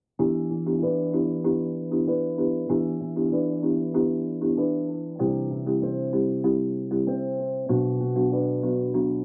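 Dancehall with a sultry, bouncy feel, this short cut from a longer piece pairs an up-front folk marimba, struck with medium mallets on hardwood bars for a woody, dry, rustic tone in a boxy small room, with thumb-plucked nylon-string guitar arpeggios that sound small and acoustic, with audible finger squeak and an analog delay, both parts carrying a cassette-tape colour over Em7, C and Bm chords, while the mix sits in light reverb under the muffled low-pass haze of a home cassette recording.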